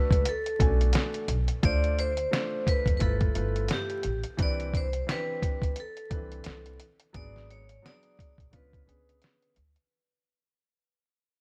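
Wrapped in vinyl crackle and small room ambience, this cool, mellow jazz-hop excerpt at 87 BPM with a swung 4/4 feel sets a metallic, ringing vibraphone melody with slow motor vibrato and analog delay up front over smooth, vintage grand piano chords moving from Bm7 through Cmaj9 to C#7b9, a woody pizzicato upright bass on gut strings, and a muffled, compressed, pitched-down sampler-style drum kit with a thumpy kick and fat snare, all fading out across its 9.9 seconds.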